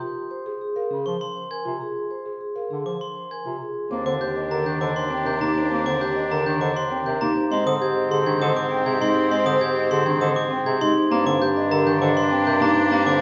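Hypnotic and bright, this minimalist classical pattern piece in 3/4, cut from a longer work, opens with a mellow vibraphone melody over woody, buzzing marimba arpeggios, joined soon after by a vintage-toned bass clarinet and bell-like glockenspiel arpeggios from 1.1 s. At 3.9 s a clear, distant oboe adds a second line, a warm bassoon takes the bass, and a violin section with vibrato and portamento holds soft, expressive sustained chords in the background. A wet recital hall reverb surrounds the ensemble.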